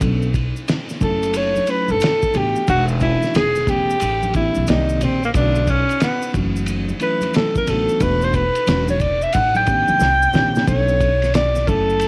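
Light reverb and a small-room ambience give this short jazz-hop clip a close, nocturnal intimacy, with a mellow hip hop groove swung on the sixteenths. A cloth-damped drum kit thuds along with a fat snare, tight kick and dark, muffled cymbals, its saturated, gritty tone rolled off at the top, and it plays a fill from 10.0 to 10.7 seconds. Underneath, a woody upright bass on gut strings is plucked with a thumpy, dark tone, while a clean tine electric piano plays mellow chords through its built-in speakers. Bright maracas and soft-handed congas sit quietly in the background. A breathy alto saxophone enters at 1.0 seconds and takes the lead up front with a jazz-style solo, using vibrato and scooped notes, its sound roomy and slightly distant, over chords that drift from Bm9 through F#m7, E13 and A7 before settling back on Bm9.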